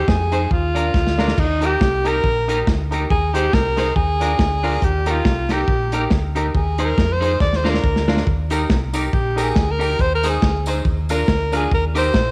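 A breathy alto saxophone opens this joyful, upbeat ska excerpt at 0.0 seconds, taking an intimate, whispered solo up front with a soft attack and vibrato throughout. Almost at once, a crunchy breakbeat drum kit, a round, hollow-body fingered electric bass and a clean, picked electric guitar with slapback echo join in, joined a moment later by woody, slightly detuned upright piano stabs that ring with long sustain. The groove moves at 139 BPM in 4/4 with a light swing on the eighths, cycling through Ab, Bb/Eb and Eb in Eb major, tuned to A4 = 436 Hz. The drums sound gritty and saturated, with a punchy kick, dark cymbals and a rolled-off top; they carry slapback echo and add fills, one of them arriving at 7.4 seconds. A jingly tambourine enters quietly in the background at 8.5 seconds, also with slapback echo, while light reverb rounds out the sound.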